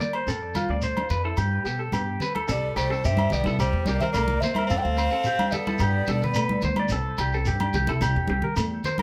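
A straight 4/4 groove at 109 BPM sets up this sunny, danceable highlife guitar band excerpt in C major: hard-hand congas with a thick, saturated skin, a grainy vintage shekere, ringing dry agogo bells and an up-front, woody pizzicato upright bass on gut strings drive it along. Over them, a twangy, slightly broken-up lo-fi electric guitar picks arpeggios with tape echo, while a clean, bright second guitar with phaser sits in the background as accompaniment. From 2.5 to 6.6 seconds, a breathy clay alto ocarina carries the melody with chiff, unsteady vibrato and plate reverb, and a punchy, forceful tenor saxophone with scooped notes adds a jazz-style second line.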